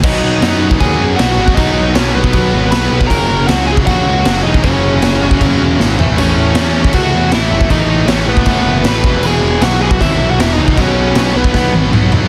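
A raw, gritty garage drum kit with a punchy kick and crash cymbal drives this rebellious, upbeat punk rock excerpt alongside a growly fuzz bass, two bright picked distorted rhythm guitars riffing in the background, and a bluesy overdriven lead guitar carrying the melody until 11.7 s, all in a dense, heavily limited mix with little reverb and drum fills at 5.8 and 11.5 s.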